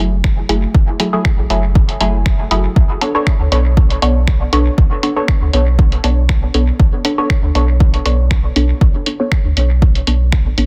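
Deep and cavernous, this dub techno excerpt moves at 119 BPM in a straight 4/4, built on muted, detuned sawtooth chord stabs that evolve through a filter sweep, soaked in chorus, phaser, dub echo and sidechain pumping as they shift from F#m9 to Bm9 at 2.8 seconds. Beneath them a clean, smooth sine sub bass sits up front with its own pumping, while an overdriven, layered electronic kick enters up front at 0.2 seconds. A muffled, compressed sampler-style kit adds finger snaps and hi-hat, its snare soft-clipped and trailed by dub echo, all inside a dry, dense, heavily limited mix.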